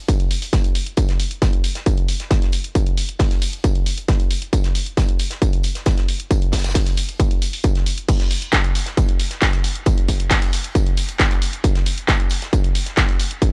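A dry, saturated mix with a cassette-tape grit frames this intense, relentless techno excerpt, built entirely from drums. A distorted, layered electronic kick sits up front, ahead of a techno kit of warm, pumping hi-hats, crash cymbal and handclaps, while a loose acoustic indie kit of filtered hi-hat, medium-tuned snare and tambourine pumps quietly in the background of its small room. At 8.1 seconds the piece drops into a new section that drives on until the cut.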